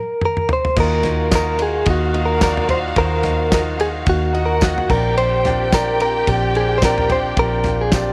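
Lightly reverberant, this uplifting piano-driven pop excerpt opens with a dry 70s drum fill, fat of snare and tight of kick, over a stop. A bright, clean, direct-recorded electric guitar carries the melody with tremolo and slapback echo before the full band arrives at 0.8 s: a round, dark, foam-muted fingered bass, a clear and intimate grand piano with audible action noise, and a distant, lush violin section full of vibrato and portamento. A jingly tambourine joins in the background at 1.3 s, while the harmony moves from Bbsus2 to Ebmadd9 and settles on Bbadd9 at 4.9 s.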